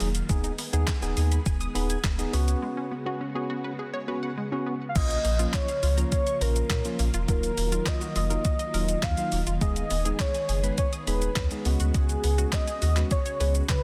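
Driving and confident, this dance-pop excerpt moves in a straight 4/4 under a dense, heavily limited modern master with light reverb and digital ambience. A crisp 8-bit digital drum machine sits up front, its thumpy kick, medium-tuned snare, handclaps, hi-hat, shaker and crash cymbal pushed through overdrive. A deep, full sub bass with an added octave anchors the low end with a mellow sine-and-triangle tone. Around them, a clean tine electric piano, heard as if through built-in speakers, carries the accompaniment, and an organ-like, vintage ensemble organ-string holds soft-attack chords with ensemble chorus. A punchy, detuned unison pluck spins delayed arpeggios in the background, and it, the piano, the organ-string and the bass all breathe with sidechain pumping. After a break from 2.6 seconds, a velvety, smooth sawtooth synth lead enters at 4.9 seconds with chorus, vibrato and delay, carrying the melody through the second section over minor and suspended seventh chords.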